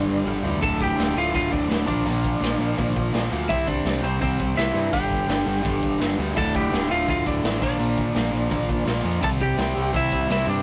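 Opening on a G5 from a bright, double-tracked distorted rhythm guitar riffing up front, with a slightly broken-up lead guitar melody and a growling overdriven picked bass, this aggressive, urgent punk rock excerpt at 168 BPM is pushed along by a gritty, pumping garage drum kit that enters with a fill at 0.3 seconds, all cycling through Dm, Bb and C in a rough rehearsal-room recording with light reverb.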